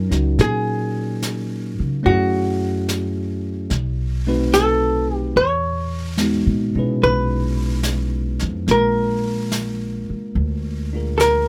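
A dark, compressed hollow-body archtop guitar carries the melody up front in this smoky, wistful jazz ballad in Eb minor, moving at a slow 72 BPM with a gentle swing. Bell-like, barky tine electric piano chords and a woody pizzicato upright bass support it through a harmony that drifts from Ebm7 toward Emaj9 and Bb7, while an airy brushed drum kit joins at 0.1 s. Light reverb softens this short fragment of a longer piece.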